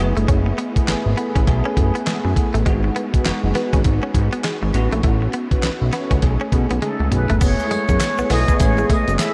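This short excerpt of slick, confident new jack swing R&B is drenched in a huge ambient reverb that gives the whole mix a dreamy haze, moving at 101 BPM in 4/4 with a swung sixteenth-note feel. Up front, a gritty, compressed sampler-style drum kit hits with a thumpy kick and fat snare, joined by handclaps, hi-hat, tambourine, toms and crash cymbal, while a thick, detuned sawtooth analog bass with a filter sweep anchors the low end. A bell-like tine electric piano, clean and bright with ensemble chorus, carries the chords from F#m11 through G#m7, A69 and B13, and adds a fill between 0.9 and 2.7 seconds. Behind it, a twangy direct-recorded electric guitar picks a compressed riff with subtle chorus, and very quiet, round synth brass adds dark, detuned stabs with vibrato and a filter swell. As a drum fill begins at 6.8 seconds, a breathy plunger-muted trumpet enters with a distant, whispered jazz melody full of wah-wah and scooped notes, and a grainy egg shaker joins close and dry at 7.4 seconds as the progression returns to F#m11.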